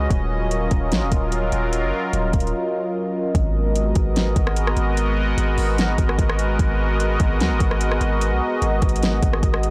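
A detuned sawtooth pad with slow attack, filter swell, chorus and sidechain pumping holds bright, resonant chords over a deep, mellow sine 808 bass, opening this melancholic, ethereal atmospheric cloud-rap excerpt in G# dorian at 148 BPM in a half-time feel. An overdriven electronic kit enters at 0.1 seconds with a soft kick, fat snare, rim click and metallic hats, and the harmony moves from D#m9 to G#m9 at 3.3 seconds after a brief silent gap. The sound is dry, blown-out and overdriven, with all three parts placed up front.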